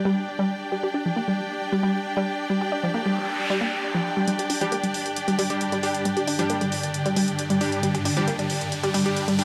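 Driving peak-time techno at 135 BPM, intense and driving, opens with a bright, up-front bowed string section holding a close, vibrato-rich texture alongside a round analog pluck riff carrying chorus, overdrive and delay, all set in a wet stone-room reverb. A noise sweep arrives at 3.1 seconds in the background, and from 4.3 seconds a build-up takes hold as a dry electronic hi-hat enters, punchy detuned supersaw stabs with delay join, a riser climbs, and a filter sweep works on the synth arpeggio sound. At 5.4 seconds a swarming, tense drone of wave-folded, granular tones settles low beneath it all, pushing the build-up on until the cut at 9.4 seconds.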